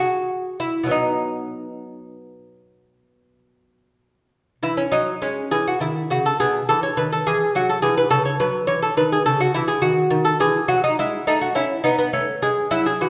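A rubato 12/8 pulse carries this flowing, radiant baroque-style dance excerpt for solo lute, whose bright, delicate, fingerpicked gut double strings, some doubled at the octave, sit up front in a lush recital-hall reverb as the opening phrase returns at 4.6 seconds and drifts through rich extended chords.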